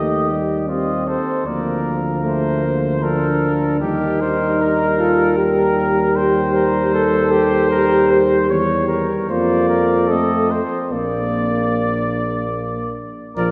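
A stately, noble classical brass quintet in three opens with all five parts together: a trumpet with light vibrato carries the melody over a clear, distant flugelhorn second line, while a mellow French horn and a soft-attacked trombone fill the middle and an up-front, warm bass trombone anchors the bass. The harmony passes through an Edim7 before arriving on Bb at 10.9 s, and the horn stops at 12.6 s as the others play on to the end of this passage cut from a longer piece. A wet church reverb surrounds the ensemble.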